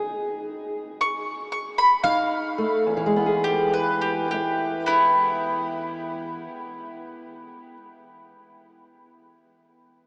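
A fingerpicked, ladder-braced acoustic guitar with dark, boxy old strings opens this gritty, laid-back acoustic country blues fragment in E major, swinging in 4/4 at 70-83 BPM with a stop and a slowing down in the opening bars. The bright, double-strung mandolin enters at 1.0 seconds to carry the melody up front, taking a solo over chords moving from E to F7 and back to E. A punchy kick drum played with brushes sounds briefly in the background at 2.0 seconds, and the whole piece sits in a huge, echoing space with a small-speaker sound.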